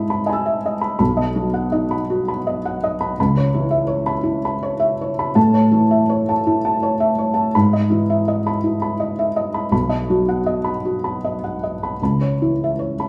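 A felt-muted upright piano plays alone, soft and mellow, sitting up front with the clatter of its action audible beneath the notes. This tender, intimate piece of neoclassical minimalist piano moves in a gently rubato three-beat lilt, circling through Emaj7/G#, B, C#m7 and A across a range from deep bass to the high upper register. A moderate studio reverb lends the close, natural sound a touch of open room before the 13.1-second passage is cut from the longer work.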